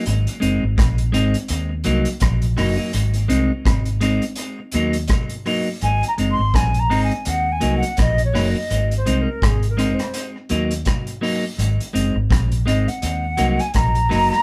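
A clean, twangy electric guitar with tape echo opens this laid-back, serious roots reggae excerpt at 83 BPM, quickly joined by a dark, foam-muted fingered electric bass that sits round and punchy up front and a vintage drum kit of hi-hat, punchy kick and rim click, its rolled-off top also carrying tape echo. The band alternates between Ab and Ebm with a swung sixteenth feel in a small, live-sounding room. At 5.8 seconds a hollow, airy concert flute with vibrato and a crisp attack takes a close-miked solo over the groove.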